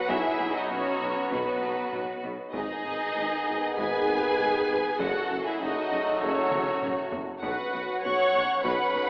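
A straight, steady 4/4 pulse drives this majestic, adventurous stretch of epic orchestral film score, cut from a longer piece. Up front, a lush violin section carries the melody with intense vibrato and a clear, slightly distant tone, while a second violin section adds a rich, focused line beneath it. In the background, a chamber viola section supplies bowed accompaniment. A vintage-toned trombone section and a soft-attack French horn section hold sustained chords. The low end comes from a mellow, roomy tuba joined by very quiet cello and double bass sections, smooth and even, with taiko drums struck with hard sticks sitting back in the mix and breaking into a fill between 6.5 and 7.4 seconds. The harmony moves from Bsus2 through G#m and F#m before returning to Bsus2. Everything is bathed in a concert hall's reverb and carries an AM-radio coloring.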